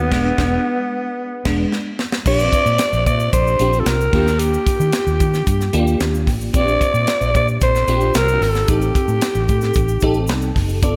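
A breathy, raspy alto saxophone with vibrato carries the melody up front in this upbeat, urban slice of polished 1980s jazz-funk pop, its slapback echo sitting over a bell-like, sparkling FM electric piano that adds chorus and its own echo. A dark, round, foam-muted fingered bass and a tight, dry funk kit with a high-tuned snare open on a band accent, and a drum fill at 1.7 seconds leads into the next section at 2.3 seconds, where a grainy egg shaker joins in the background. A lush hall reverb gives the whole band a big arena sound.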